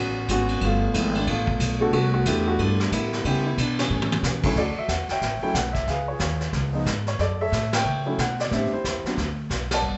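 Heard in a single large studio room with moderate reverb and a rolled-off, dulled top end, this swinging jazz piano trio excerpt opens on a polished, woody upright piano carrying the melody over a dark, thumpy pizzicato upright bass, with a vintage brush kit joining at 0.3 s. The mid-forward drums bring brushed snare, punchy kick, hi-hat, ride, crash and toms, adding a short fill just before the harmony settles into a new section at 4.6 s. The band hits shared accents at 7.7 s and again near the close, as rich extended chords give the cut a warm mood.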